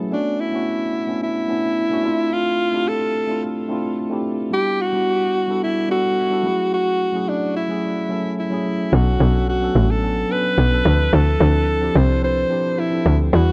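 A dark, small-room sound frames this deep, hypnotic amapiano excerpt at 109 BPM in B minor, where a mellow tine electric piano moves through Bm9, Dm9, Em9 and F#m9 beneath a smooth, vibrato-rich alto saxophone solo trailed by tape echo, until a tight, punchy FM log drum bass with a noisy, percussive attack drops in up front at 8.9 seconds.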